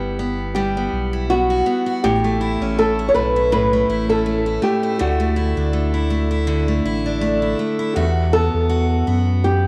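A dark, fingerpicked flamenco guitar carries the melody through tape echo over a bright, up-front steel-string guitar with audible finger squeak and a deep, full sub bass in this heartfelt, sunny pop fragment at 81 BPM with a gentle sixteenth-note swing, moving through Emadd9/G, A and Dadd9 in an echo-chamber reverb until a soft, felt-muted upright piano with audible action noise enters quietly in the background at 7.9 seconds as the music returns to Emadd9.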